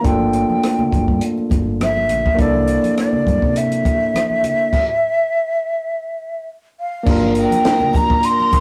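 A rough rehearsal-room recording with warm saturation and a small, wet room sound carries this lush, smooth and romantic 1970s-style soul fragment at 103 BPM, its sixteenths lightly swung over Gm9 and C13 before settling on Gm7. A breathy, unsteady jazz flute with vibrato and a soft attack sings the melody up front beside a barky, overdriven tine electric piano through a combo amp, while a round, foam-muted vintage bass, a dark, tight little cocktail kit with a high-tuned snare and rim clicks, and low-tuned congas in the background fill out the groove. After a stop from 4.7 to 7.1 s, a dark, woody bowed string section and a faint, shimmering triangle join at 7.1 s.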